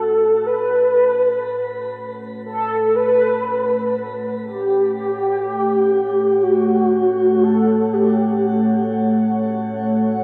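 A mellow, horn-like synth lead carries the melody from the start, its round, detuned sawtooth tone sitting up front with vibrato, portamento gliding between notes, and a filter sweep, dressed in ensemble chorus, shimmer reverb and analog delay until it stops at 8.4 seconds. Alongside it, a deep, dark ambient pad holds sustained chords on F#m, fading in across the whole 10.2 seconds. Its detuned sawtooth unison and sine sub octave give it a moody weight, with a slow attack, long release, chorus, built-in reverb and its own shimmer reverb. This free-time ambient fragment, cut from a longer piece, feels ominous and vast. A wet spring reverb and an echo-heavy mix carry the grain of cassette tape.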